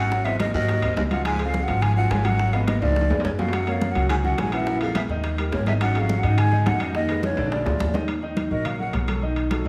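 Heard in a moderate recital hall with a small room's ambience, this sultry, sophisticated Afro-Cuban jazz excerpt moves at a brisk 211 BPM in Eb minor. An airy, hollow concert flute with vibrato and slapback echo carries the melody over a clear baritone saxophone second line with scooped notes, while a baby grand piano with long sustain accompanies and a woody, thumpy pizzicato upright bass on gut strings sits up front. Soft-handed congas murmur in the background, tight, very quiet bongos drop out at 8.0 seconds, ringing metal-shell timbales add vintage colour, and the flute takes a brief solo from 8.1 seconds.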